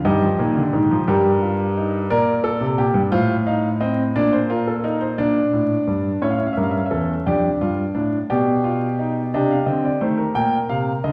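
A lone grand piano opens through a faint vinyl crackle, playing a solemn yet driving baroque-style four-voice fugue in Eb major, in 6/8 at 58 BPM counted in dotted quarters, with a straight feel. Its warm, smooth, vintage tone with long sustain sits up front, spanning E2 to G5, while a reverberant recital hall places the listener further back in the room. From 6.2 seconds, the harmony moves away from the home key through A7, Dm/F and G7/B toward C minor, before this portion of a longer piece is cut off on Gm/Bb at 11.1 seconds.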